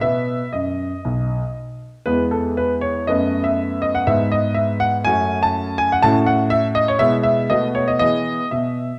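In a straight 4/4 pulse at 120 BPM, this playful, elegant classical-period piano sonatina excerpt in E major features a clear, up-front solo grand piano with long sustain spanning B1 to A5, set in a moderate recital-hall reverb with a dark production, moving from B through G#m7 and F#m to a B7 that resolves home to E at 8.0 seconds.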